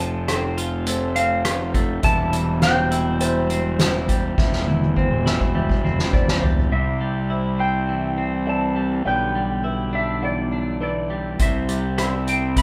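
This hopeful, euphoric post-rock excerpt in C major opens with the full band except the drums. A dark, clean lap steel carries the slide melody through an analog delay, over a twangy pedal steel holding very quiet sustained chords with volume swells. Picked twelve-string electric guitar arpeggios ring out, the mellow, felt-muted upright piano, audible action noise and all, sits in the background, and a round, overdriven fuzz bass sits up front. The soft-mallet drum kit enters at 0.3 seconds with a fat snare and punchy kick, heard roomy and distant with a rolled-off top, and plays a fill before dropping out at 6.7 seconds. The harmony moves from F to C/E, then C and Em7/B, and the drums return at 11.4 seconds as the chords resolve to C. At a straight 103 BPM in 4/4, the band plays live together in one room with a moderate studio reverb.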